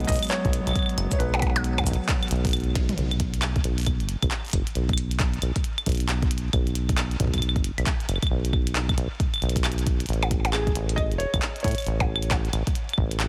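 Swung sixteenths at 135 BPM drive this glitchy, intricate IDM excerpt, built on a deep, rubbery acid bass with a saturated filter pluck and a busy drum kit of tiny snare, clicky hats, claves, handclaps, shakers, toms and percussion blips in small room ambience with delay, under a deep electronic kick. A felt-muted upright piano plays a soft, intimate melody with audible action noise and delay from 0.0 to 2.7 seconds, over a warbling, nostalgic tape-like pad that carries G#m7 with chorus, 12-bit sampler grit and sidechain pumping until 2.9 seconds. After a drum fill and band accent near 3.0 seconds the harmony moves to B5, the chords shift to A at 10.1 seconds, and the piano returns at 10.5 seconds, all within a dry, heavily compressed radio sound.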